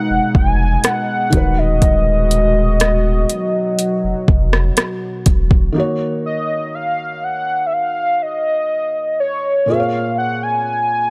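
A velvety synth lead carries the melody up front in this moody, longing piece of contemporary R&B, its detuned sawtooth voice smoothed by chorus, vibrato and delay. Beneath it, a felt-muted upright piano plays soft, intimate accompaniment, with audible action noise giving it a vintage character. A shimmering, retro pulse-width pad holds sustained chords. A round sine sub bass sits up front, and an electronic drum kit of soft kick, hats and rim click brings an overdriven edge. The pad, bass and drums all drop out at 5.7 seconds, leaving lead and piano alone for the closing stretch as the harmony settles onto minor seventh chords. Light digital reverb and a dark, warm production wrap this excerpt, which is cut from a longer piece, in a slow, unhurried atmosphere.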